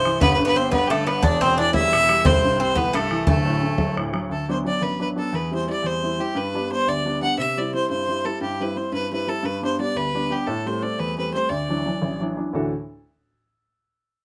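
A rollicking 6/8 jig rhythm drives this cheerful Celtic folk passage, cut from a longer piece. A single bowed fiddle carries the melody up front, its biting, nasal tone earthy and touched with light vibrato. A present grand piano sits equally forward with a clear accompaniment that reaches deep into the bass, while a picked Irish bouzouki adds a bright, metallic second line from its doubled strings. An open, boomy bodhran, heard in a live room, drives the opening stretch; the bouzouki falls away at 3.9 seconds and the bodhran at 4.2 seconds, leaving fiddle and piano to carry on together. Moderate studio reverb lends the ensemble a modest sense of space.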